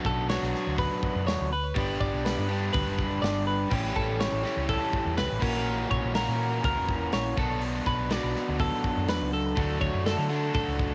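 A dry home cassette recording with little reverb frames this bright, playful math rock and midwest emo excerpt at 123 BPM in 4/4, moving through Bm7, Gmaj7, A7 and F#7/A# before arriving on Dmaj7 at 9.6 seconds. An up-front, double-tracked overdriven electric guitar picks the riff with a warm, tape-softened edge, while a clean, compressed twelve-string electric guitar spins high arpeggios through analog delay. Underneath, a dark, round hollow-body short-scale bass holds the low end, and a mid-forward acoustic drum kit drives the groove with a punchy kick, a medium-tuned snare, hi-hat and crash cymbal.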